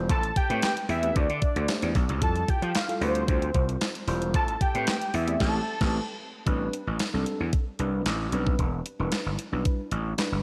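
A straight 4/4 groove from a crisp 8-bit drum machine drives this slick, late-night slice of early-eighties boogie funk, its thumpy kick, medium-tuned snare, hi-hat, handclaps and crash cymbal sitting up front with a tape-warm character. A gritty slap bass, growly, bright and punchy through overdrive, holds down the low end, while a worn, slightly out-of-tune tine electric piano plays the chords through its built-in speakers with light overdrive and slapback echo. A fat analog lead carries the melody until 6.2 seconds, its detuned sawtooth and square waves with a sub octave giving a warbling, vintage, mellow tone, thickened by chorus, vibrato and slapback echo. A very quiet, jingly tambourine joins at 0.6 seconds, and the band hits an accent just before the second section begins at 6.5 seconds, where the harmony moves from rich ninth chords toward a closing minor seventh. A lush hall reverb gives the mix a big arena feel, and the recording is cut from a longer piece.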